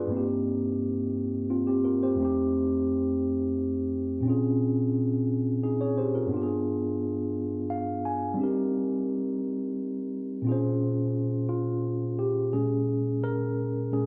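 R&B in a slow 6/8 at 58 BPM in Bb dorian, this short excerpt from a longer piece has a sultry, late-night mood carried entirely by a solo tine electric piano. Mellow and clean, heard up front through its built-in speakers, the keys move through chords such as Cm7/G, F9, Bbm7 and G7b9, add a brief fill at 7.3 seconds, and take a solo turn from 12.5 seconds as the section changes. A plate reverb and a small room ambience give the sound a soft, intimate glow.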